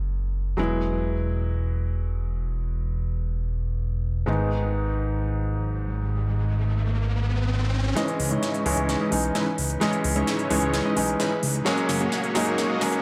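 A dreamy mix soaked in plate reverb opens this euphoric, anthemic festival progressive house excerpt, where a soft, felt-muted upright piano with audible action noise and tape echo sits up front beside a fat, wave-folded analog bass, with a very quiet riser creeping in at 5.6 seconds. At 8.0 seconds the build-up begins as a dense, detuned supersaw riff arrives under a filter sweep and tape echo, joined by a big-room dance drum kit whose huge snare and crisp hats drive a drum fill through to the end of this cut from a longer piece.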